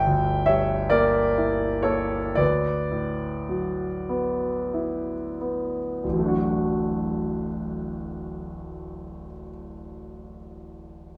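A concert grand piano sounds from 0.0 to 11.2 s, warm and up front with a deep bass, in a dreamy, pastoral classical fragment in D major and a slow, rubato 6/8 at roughly 30-49 dotted-quarter beats per minute. The piano moves from Gm6 to D69, slowing through the first 6.0 seconds, then settles on a plain D chord as the second section begins. A wet stone-room reverb surrounds the instrument.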